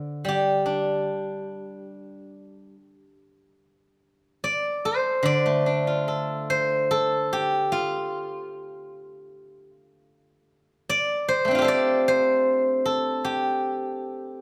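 Chinese traditional solo plucked-string music in a pastoral, elegant mood, this short excerpt from a longer piece features an up-front steel-string zither played with fingerpicks, its silvery, ringing tone moving in free rubato through a moderate recital-hall reverb, with a new section beginning at 3.6 seconds.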